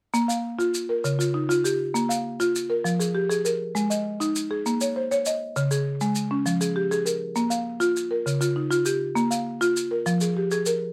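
Close, detailed microphones and light reverb frame this short, hypnotic cut from a longer southern African traditional piece, an mbira-style interlocking cycle in 12/8 at 133 BPM with a straight feel in Bb dorian. A buzzing marimba played with medium hard mallets carries the arpeggios up front from Db3 to F5, its hardwood bars sounding woody, dry and vintage, while quieter maracas add a grainy, saturated texture underneath. The trance-like cycle moves through Bb5, Db and Fm, with a turn to Ab5 and Bbm, running from 0.1 to 10.9 seconds.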